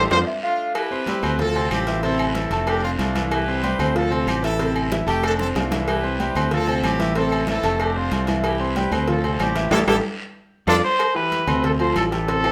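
Salsa at 187 BPM in C major, festive and danceable, this excerpt sets a brilliant, tight horn section carrying the melody from 0.4 to 10.8 seconds before a punchy trumpet with light vibrato and scooped notes takes over at 10.7 seconds, over a present grand piano with audible action noise, a growly up-front fingered electric bass, ringing timbales and agogo bells, bright congas, raspy guiro, woody claves, round low-tuned cowbell and bongos, brief touches of bell-like celesta, drum fills and band accents, and a moderate studio reverb.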